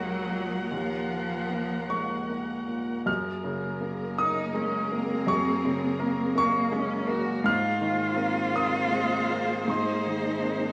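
Neoclassical piano and strings in 6/8 with a rubato feel, this short passage cut from a longer piece carries a reflective, melancholic mood. An upright piano holds the accompaniment throughout, its tone woody, intimate and polished, with long sustain and audible action noise that keeps it close and present at the front of the mix. A solo bowed cello carries the second line with expressive vibrato and portamento, its voice rich. Behind them, a focused chamber string section sustains bowed chords with vibrato, sitting lower in the balance. The harmony moves from Ebmadd9 to Gbadd9 at 3.1 seconds and on to Abadd9 at 7.5 seconds. A lush, wet hall reverb with a 2.5-second decay surrounds the parts, though the overall mix has the rough quality of a home demo.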